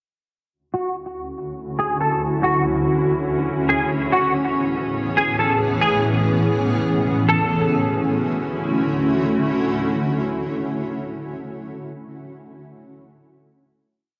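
A clean, hollow-bodied electric guitar opens this dreamy, floating piece of atmospheric cloud-rap at 0.7 seconds, playing a sparse, fingered melody that repeats like a sampled loop, its tone compressed and softened by chorus, delay and a low-pass filter. At 1.3 seconds a granular cloud pad blooms in alongside it with a slow attack, holding blurred, detuned chords that feel full-bodied and bright yet evolving and cloudy, carried by their own built-in reverb and a low-pass filter. Drifting in free time, the opening breakdown carries a filter sweep and moves between Dmaj7 and Amaj7 before settling back on Dmaj7 for a long final chord. The guitar stops at 8.5 seconds, leaving the pad to sustain and release on its own. Everything sits in a lush hall reverb, and the recording has the worn, warbling character of old cassette tape, with a warbly pitch drift that deepens the hazy mood.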